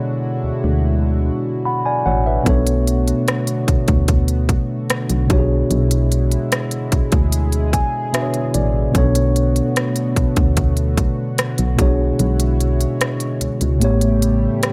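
Sensual and moody, this short contemporary R&B excerpt moves at an unhurried pace in a straight four-beat feel, its chords drifting between E13, Bm9 and E13/B before settling on A7 near the close. A mellow tine electric piano carries the accompaniment from the first second, its clean, direct tone sitting up front and stepping forward with a fill between 7.3 and 8.9 seconds. Beneath it, a chorused pulse-width pad holds sustained chords with a shimmering, retro character, its detuned, evolving layers blooming slowly and darkly in the background. A solid FM bass enters almost at once, punchy and round with a fast attack, keeping to a low, tight range. The trap drum kit arrives at 2.5 seconds with a hard-clipped kick, crisp hats and rim clicks in a tape-tinged, up-front sound, and the kick drops out from 12.2 seconds to the end. The mix is dry and close, with little reverb around the parts.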